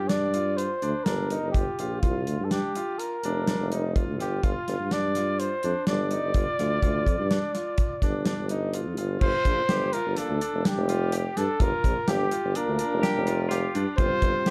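A dark, lightly reverberant production frames this brooding, driving progressive band excerpt in 5/4 at 125 BPM in G minor, where a breathy jazz trumpet with vibrato and scooped notes carries the melody up front through plate reverb over a present, pop-style tuba bass and a polished acoustic drum kit with a punchy kick, while a brilliant concert grand piano spins arpeggios through digital delay, a mellow tonewheel organ with overdrive and fast rotary speaker joins in the background at 9.5 s, and a clean, picked electric guitar adds a brief delayed second line at 13.0 s.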